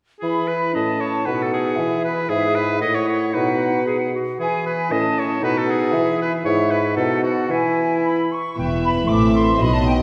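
The recording sits in a spacious scoring-stage reverb, heard from further back in the room, giving this cheerful, graceful classical-period movement for symphony orchestra a roomy glow. At 116 BPM in a straight 2/4 and in E major, it opens with the woodwinds: an airy small flute group on top, a clear oboe up front with vibrato, and a bright clarinet in the background, all carrying second lines over a mellow bassoon accompaniment. The winds move through simple cadential harmony around E, A and B, with brief unharmonised moments, and the reeds and bassoon drop out at 8.3 seconds while the flutes carry on. At 8.6 seconds the strings and horns take over. A rich, pure violin section has the melody with a soft attack, played sul tasto, while the viola section, a warm, distant French horn section with sustained chords, the cello section in the background and a dark double bass section up front fill in below. 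A second violin line joins at 9.1 seconds as the harmony turns to A minor, and the excerpt ends just after, cut from a longer piece.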